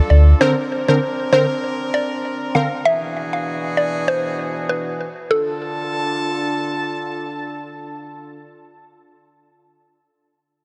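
A swung 16th-note dancehall groove at 98 BPM in D minor sets a hypnotic, sultry mood in this short cut from a longer piece, where a bright brass ensemble with light vibrato holds sustained chords up front throughout, a woody, round FM mallet-like synth pluck carries the melody through chorus, phaser and delay from 0.1 to 7.1 s, and a punchy, detuned sawtooth synth brass stab with a filter sweep and chorus adds accompaniment until 2.7 s, moving through Bbadd9, E7 and Dm in a dreamy mix that tops out at 10.5 kHz, soaked in a huge 3.8-second ambient reverb.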